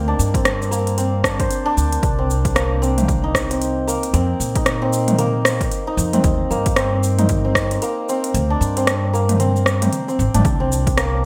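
A shimmering, hammered santur sits up front, spinning arpeggios through a digital delay across this 11.3-second clip cut from a longer organic downtempo piece in C minor. The mood is earthy and mystical, moving at 114 BPM in 4/4 with a 16th-note swing. Beneath it, a woody, growly pizzicato upright bass on steel strings carries the low end with sidechain pumping. An overdriven organic electronic drum kit, re-recorded in a large room and treated with gated reverb, adds smooth hi-hats, rim clicks, shaker and toms, while a punchy, layered electronic kick drum, also overdriven, drops out from 8.3 to 10.5 seconds. The harmony moves from D7sus4 through Cm7, F5 and Eb to a rootless Abmaj9#11 before landing on C7(no3), all framed by a moderate plate reverb and a bright 1980s-style digital production.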